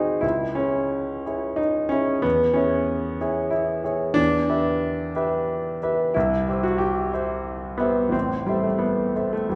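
This is a romantic classical character piece for solo piano, passionate and lyrical, in C# minor and 3/4 at around 91 BPM, with uneven beats and free rubato. The grand piano sounds clear, intimate and natural, placed up front with audible action noise, and it spans from A1 up to E5 across the whole 9.6 seconds. The harmony moves from C# minor through its first inversion toward E minor, C and A minor, lending the passage a searching, shifting colour. A reverberant recital hall surrounds the instrument, giving a churchlike or concert-hall bloom with a softened top end. The piano is tuned slightly low, to A4 = 437 Hz, and the passage is cut from a longer piece.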